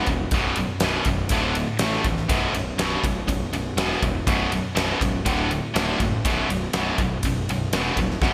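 A tight, double-tracked distorted guitar riff sits up front in this powerful, swaggering hard rock excerpt at 122 BPM, moving through B, D5, A5 and B5. Beneath it, a dark, round electric bass with punchy fuzz and overdrive joins at 0.1 seconds alongside a huge arena drum kit, whose fat snare, boomy kick and ride cymbal carry gated reverb. A lush hall reverb and a bright 1980s-style digital sheen give the whole an arena-sized feel.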